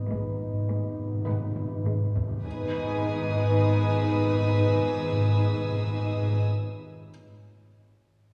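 A wet concert-hall reverb places this ominous, eerie suspense cue some distance back in the room, though a close, small-room ambience still clings to the timpani up front, struck with medium mallets on calf heads. From the first moment a mellow, vintage French horn section holds soft, lightly vibrato chords in the background, while a dark, intimate double bass section and a floating symphonic cello section sustain the low bass, bowed sul tasto. A studio cello section with a gentle attack plays a brief low riff until 2.2 s, and a very quiet, dry taiko ensemble with hard sticks adds drum fills beneath the timpani's opening fill. At 1.3 s the upper strings arrive: a clear, pure studio violin section carries a high floating melody, a close chamber violin section adds a smooth second line, and a woody viola section murmurs accompaniment in the background. From 2.5 s a further chamber violin section, bowed sul tasto with vibrato and a soft attack, spreads a faint, very high texture over the close of this slow, brooding fragment, cut from a longer piece.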